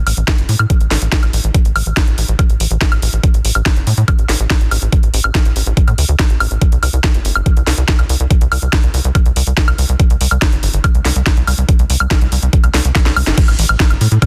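This psychedelic trance piece runs at 142 BPM in a straight 4/4, with a driving, alien mood throughout. A tight sequencer bass starts at once and spans G1 to A2. It is punchy and saturated, blending sawtooth, square and sine tones with wave-folding, a plucked filter, a moving notch, a fast attack and a decaying tail. An electronic kick drum sits up front with a knocking, overdriven thump. The layered electronic kit adds a cracking snare, bright hi-hats, crash cymbal and woodblock, also overdriven and re-recorded in a small room. The sound is dry, dense and heavily limited, and a drum fill from 12.7 to 13.4 seconds carries a band accent at 13.3 seconds in this section cut from a longer piece.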